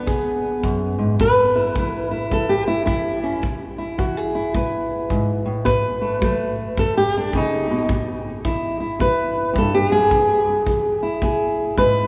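A fingerpicked steel-string acoustic guitar carries the melody up front, its old strings giving a dark, woody tone as it moves through a laid-back, gritty swung country blues over E, A5 and B7 changes. A tight, brushed kick drum sits far lower in the mix beneath it. The whole short passage, cut from a longer piece, rings out in a long cathedral-like reverb that places the duo in a church or concert hall.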